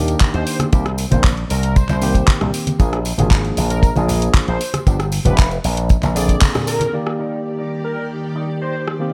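A punchy, bright slap bass run through an envelope filter drives this sunny, groovy nu-disco excerpt at 116 BPM in Eb major. It sits up front beside a dry, tight kick and an overdriven, layered electronic kit of handclaps, hi-hat and rim click, with tambourine and congas tucked in the background, while a barky tine electric piano with slapback echo carries the chords and a thick, detuned unison lead with vibrato, lush chorus and tape echo sings the melody, capped by a band accent at 6.4 seconds. At 6.9 seconds the bass and percussion drop away as a vintage string machine pumps in with sustained chords, joined at 7.2 seconds by a clean, picked envelope-filtered guitar riff.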